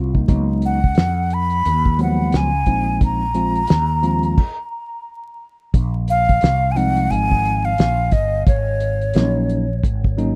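Jazz-hop with a mellow, cool hip hop mood, cut from a longer piece and swung on the sixteenths. A cloth-damped, thuddy drum kit sits up front with a fat snare, a tight kick and dark, rolled-off cymbals, while a round, punchy fretless bass adds lush chorus underneath. A clean tine electric piano, heard through its built-in speakers, lays down sus chords as accompaniment. From 0.7 seconds a breathy, hollow jazz flute carries the melody high above, its soft attack and vibrato trailed by tape echo. A stop breaks the groove at 4.4 seconds before the second section, and the electric piano adds a brief fill at 10.2 seconds. The rough home-demo mix has light reverb and a bed of vinyl crackle.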